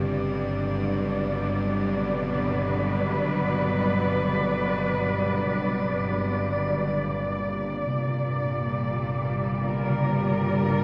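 A muted chamber cello section opens this dark ambient drone fragment on a veiled, con sordino chord, joined at once by a string-like, sawtooth-edged drone in the low register and a very quiet, inharmonic FM tone that warbles high above with an eerie, nasal colour. The mood is cavernous and ominous, floating in free time and tuned to A4 = 442 Hz, with the whole texture set in a vast cathedral reverb that lets each sound hang for seconds. The cellos sit up front with vibrato yet sound distant and shadowy, sustaining chords that move from B minor to G minor at 7.0 seconds. The low drone is tense and bright, its detuned unison layers, noise and vibrato giving it a restless shimmer. A bronze singing bowl rings briefly at the start, then returns in the background at 7.9 seconds with close, dry, meditative arpeggios struck with a suede mallet, its tape echo and slow beating adding a hypnotic pulse to the closing stretch.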